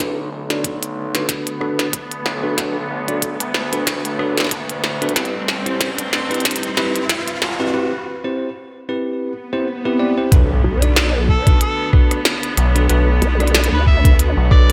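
Swung 16ths at 93 BPM drive this playful, gritty glitch hop clip in B phrygian, where a thumpy, pitched-down kick and a glitchy kit of tiny snare, rim click and clicky hats sit up front under a nasal, wave-folded synth bass, bell-like tine electric piano stabs and bowed studio strings carrying 12-bit sampler grit, both filter-swept and sidechain-pumped through a build-up with drum fill, riser and break over Bm7 and Am9, before electronic swell and impact land the drop at 10.3 seconds, bringing in a chorused vowel-sweep wobble bass at 10.6 seconds and, from 11.3 seconds, a mellow, vibrato-laden harmonica solo with scooped notes and digital delay, all in a bright 1980s-style digital production.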